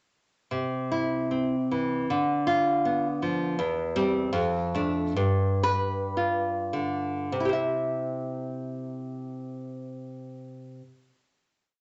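A nylon-string guitar carries this short romantic piece alone, fingerpicked in a bright, classical manner with rocking broken chords placed up front in the sound. The mood is tender and sunny, set in C major and 2/4, with a rubato feel that moves between 49 and 82 BPM and slows from 2.8 to 7.3 seconds. The harmony travels from C through Bdim/D, C/E, Dm/F and G7 before settling back on C at 7.3 seconds, where a final chord rings out. The guitar spans from E2 up to E5, and the tuning sits slightly low at A4 = 437 Hz. A wet large-studio reverb gives the playing a generous, glowing space, while the top end is gently rounded off, leaving an intimate tone across this complete miniature.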